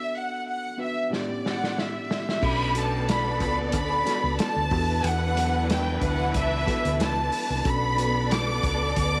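An up-front, richly bowed violin section carries the melody with expressive vibrato over a worn, slightly out-of-tune tine electric piano with light overdrive, in this bittersweet, cinematic 1970s-style soul excerpt in B minor at 92 BPM, swung on the sixteenths. A muffled, lo-fi vintage drum kit with dark cymbals enters with a fill at 1.1 seconds, and at 2.4 seconds a round, hollow-body fingered electric bass joins, along with a lush string section playing a second line with portamento and soft attack. The chords move between E7sus4, A7sus4 and Bm7, and the sound sits in a small room with light reverb.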